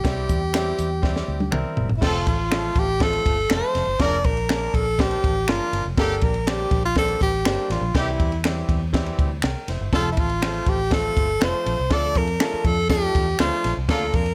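A breathy tenor saxophone carries the melody up front in this uptempo 1960s-style soul excerpt, its close-miked, jazz-style tone marked by scooped notes. The piece moves at 121 BPM in a straight 4/4 in F major, with a danceable, uplifting mood. Beneath it, a clear baby grand piano accompanies with long sustain and audible action noise, while a vintage muted fingered electric bass gives a round, foam-muted, amped low end. A compact cocktail drum kit with a high-tuned snare, punchy kick and rolled-off top plays throughout, including a fill from 1.0 to 2.0 seconds, and finger snaps add a human touch. At 2.0 seconds a warm horn section with light vibrato enters as a second line, over chords moving from F through Bb/F, Gm and C to Dm, in a mix with little reverb.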